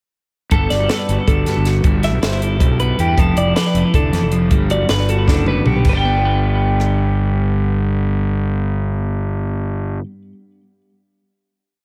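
A straight 7/8 groove drives this short, intricate and wistful math rock and midwest emo piece, with a compact cocktail drum kit that is dry and up front, its punchy kick, high-tuned snare, rim clicks, toms, hi-hat and dark cymbals leading into a drum fill at 5.3 seconds before the kit drops out at 6.9 seconds. A growly, overdriven fuzz bass sits prominently with a syncopated riff, while two clean, compressed twelve-string electric guitars soaked in tape echo weave over it: one plays a twangy picked ostinato, and the other a bright, rolling fingerstyle arpeggio higher up. The lush major-seventh and ninth chord cycle settles on a final ringing chord from 5.9 seconds, all set in an echo-heavy mix with light reverb and small-room ambience.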